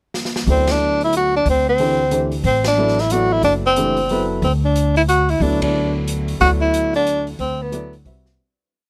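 Searching and hypnotic, this short modal jazz piece in a lilting swung triple metre opens with a drum fill on the kit before the up-front tenor saxophone enters with soft-attack subtone hook phrases over a D9 moving to a rootless G/D. The pizzicato upright bass, woody with steel strings, holds a two-feel line, while the upright piano comps in syncopated quartal voicings with long sustain. Beneath them, the kit keeps time with sticks on the hi-hat, with dark cymbals, a boomy kick and a medium-tuned snare, all in a dry studio sound, with band accents at 0.6, 2.6 and 5.6 seconds before a fade-out from 6.8 seconds.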